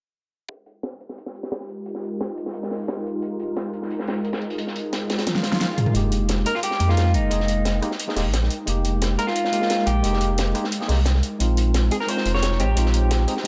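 A deep, up-front sub bass with an octave layer anchors this melancholic, soulful liquid drum and bass excerpt. It arrives at 6.0 s alongside a clean tine electric piano with delay and filter sweeps, and a slightly broken-up picked electric guitar follows at 6.5 s, carrying the melody through a small old amp. Underneath, an ethereal, detuned pad with chorus and sampler grit sits in the background from 1.4 s. A dark, gritty breakbeat kit plays from 0.5 s, joined by a fat, overdriven pop kit and an electronic swell with a drum fill leading into the build-up.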